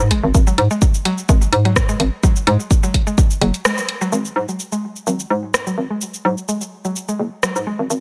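Minimal techno at 127 BPM in 4/4 with a light 16th-note swing, sparse and hypnotic, cut from a longer piece, where a hollow, knocking FM bass bounces and pumps under the sidechain while a house kit of cabasa, hi-hat and rim click ticks along, tape-warm and up front. A woody, mallet-like synth pluck carries a small riff with chorus, delay and ring-modulated brightness, and a punchy electronic kick drives only from 0.3 to 3.3 seconds. The track shifts into a new section at 4.1 seconds after a full-band accent at 3.7 seconds, all set in light reverb with the drums re-recorded in a large room.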